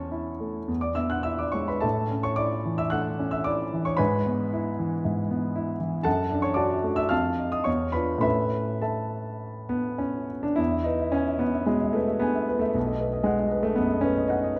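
Steeped in a wet recital-hall reverb and a dark production, this hopeful romantic character piece for solo piano moves in a rubato 4/4 at around 100-119 BPM, its clear, intimate grand piano sitting up front with audible action noise as it ranges from B1 to F#6 and shifts from A major to E major at 10.6 s, before the passage is cut off at 14.6 s.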